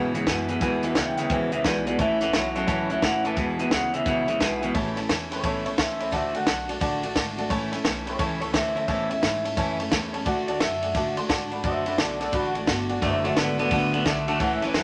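A swung 4/4 groove at 174 BPM drives this rollicking, upbeat rockabilly excerpt in A major, cut from a longer piece. The compact cocktail drum kit sits up front, with a tight kick, high-tuned snare, hi-hat and dark-toned ride cymbal all sounding dry, while the pizzicato upright bass stays in the background with a woody, growly thump. A picked dreadnought acoustic guitar adds bright, full-bodied accompaniment with audible finger squeak, and a clear upright piano fills in intimately behind it, its action noise audible. A clean, twangy electric guitar plays a riff up front through spring reverb until 4.7 s and returns at 13.0 s. The melody comes from an electric guitar through a small old amp with a slightly broken-up edge, and a clean electric guitar solo runs from 4.7 s to the end as the chords move among E, A and D, all set in a moderate studio reverb.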